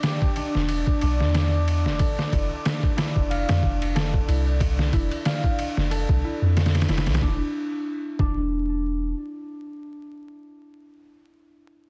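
Hypnotic and cinematic, this trip hop excerpt moves at 92 BPM with a lightly swung 16th-note feel, as a dark, detuned sawtooth pad with chorus holds sustained chords over Em7 and Fmaj7 while a mellow, thumb-plucked concert harp rings out arpeggios through a digital delay. A gritty, pitched-down sampler-style kit with a thumpy kick, snare and ride sits up front in studio ambience, and a deep, round sine 808 bass with tube saturation enters at 0.6 s. The harmony shifts to Dsus2/E at 7.2 s, the drums fall away at 8.4 s, and the harp carries on until 11.0 s, all within a dense, heavily limited master dusted with vinyl crackle.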